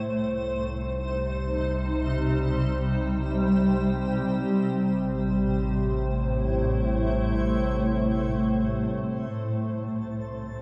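A dark, warm production set in a wet concert hall with a long reverb tail opens this spacious, reflective ambient passage, cut from a longer piece and drifting in free time. Up front, a cloudy, blurred granular pad sustains chords from A2 to G5, its slow attack and long release letting the harmony evolve through shimmer reverb as it moves from C minor to A minor and back to C minor at 9.3 seconds. Beneath it, a round, deep analog bass holds low notes from the start, while from 0.3 seconds a resonant analog drone, shaped by pulse-width modulation and chorus, hums in the middle register. Only at 9.9 seconds does a twinkling, sparkling granular texture appear in the background, adding a bright octave-up shimmer on a high A before the passage ends at 10.6 seconds.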